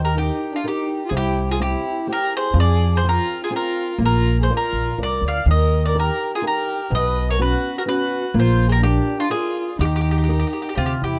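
Italian folk serenade in Eb major, sunny and romantic, moving in a rubato 3/4 around 124 BPM across this brief 11.2-second excerpt. An up-front mandolin carries the melody with a round, double-string pick, while a single bowed violin adds a dark, boxy second line with light vibrato. A small, thumb-plucked nylon-string guitar, its finger squeaks audible, fills in the accompaniment, and a prominent pizzicato upright bass anchors the low end with a woody tone, all captured in a dry, close 1970s-style studio sound.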